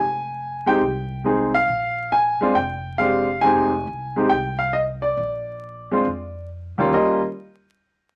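A clear, smooth concert grand piano sits up front carrying the melody, with a vintage tone and a deep low end. A woody, thumpy pizzicato upright bass on gut strings plays well beneath it, and both parts run from 0.0 to 7.2 s. This warm, swinging jazz excerpt moves at 137 BPM in Eb major over Fm7 and Bb7 changes, arriving on Eb9 at 6.9 s, with moderate studio reverb and a layer of vinyl crackle.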